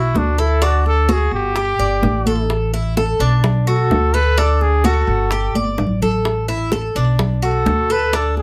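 This is a sunny Cuban son and guajira fragment, cut from a longer piece, moving at 128 BPM in a straight 4/4. A breathy, whispered trumpet with vibrato and a soft attack carries the melody up front, close-miked and intimate in a pop style as it solos from start to finish. Beside it, a bright, metallic Cuban tres picks arpeggios on its doubled strings, given a slapback echo, while a woody, thumpy upright bass with gut strings plays pizzicato beneath. Congas and bongos come in at 0.2 seconds, the tight, high-tuned bongos struck with hard hands and the thick-skinned congas played softly in the background, both close and dry, with a drum fill arriving at 5.5 seconds. The chords cycle through Bm7, D, G5 and A5, and a light reverb gives the whole a warm glow.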